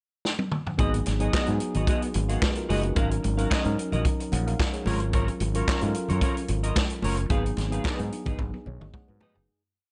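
A four-on-the-floor beat with sixteenth-note hats and a clap-layered snare opens with a drum fill at 0.2 seconds and drives this danceable 110 BPM disco piece in G# dorian, where a punchy, growly overdriven fingered bass plays a syncopated line with muted ghost notes, a clean, chorus-treated electric guitar chops out sixteenth notes, a worn, slightly out-of-tune tine electric piano adds lightly overdriven syncopated chords and a closing fill from 8.4 seconds, and close, dry congas sit in the background with a slap on two, the small-room groove fading out from 7.3 seconds.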